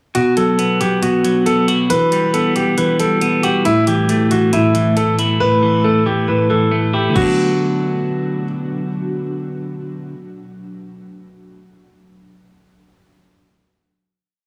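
A clear, intimate concert grand piano carries a looping melody with audible action noise and a touch of tape echo, setting a dark, melancholic tone for this short half-time trap and hip hop piece. A clean, twangy electric guitar with subtle chorus plays a repeating eighth-note arpeggio beside it, while an ethereal, airy pad enters at 2.0 seconds with mellow sustained chords, and an electronic drum kit supplies a knocking kick, bright hi-hats and crash cymbal. The drums fall silent from 5.4 to 7.2 seconds, leaving piano, guitar and pad to carry the music. The drums then return for a brief moment as a final B minor chord arrives at 7.2 seconds, all set in light reverb and digital ambience.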